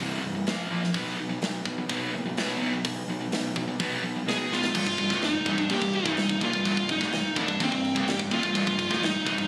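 A straight, driving 4/4 pulse anchors this aggressive, epic heavy metal passage, cut from a longer piece. Two sludgy, picked guitars open the riff together, one very quiet and dark, the other overdriven and sitting in the background, while a round, fuzz-soaked fingered bass growls beneath them. At 0.5 seconds a tight, acoustic drum kit arrives up front, with a tight kick, medium-tuned snare, hi-hat and bright crashes ringing in a big room, as the harmony moves through Bb5 and B5 power chords. At 4.3 seconds a shadowy, high-gain lead guitar takes the melody up front, and a drum fill at 4.5 seconds leads toward the second section. A biting, double-tracked rhythm guitar joins the background riff at 4.7 seconds, just before the music settles on C minor at 4.8 seconds. The sound is compressed and lightly reverberant, with an in-the-room phone quality.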